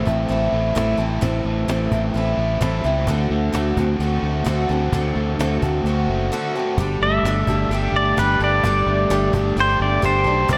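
Folk rock with a heartland rock lean and a warm, open-road mood, this straight 4/4 excerpt sets a boxy, old-stringed picked archtop with slapback echo and a bright, double-tracked overdriven electric riff over a dark, round, up-front fingered bass and a woody, very quiet cajon played with soft hands, moving from Am to D7 before a clean, fingerpicked pedal steel enters at 7.0 seconds for a slide solo with volume swells and slapback echo over Gsus2, all set in a lush hall reverb that gives a big arena sound.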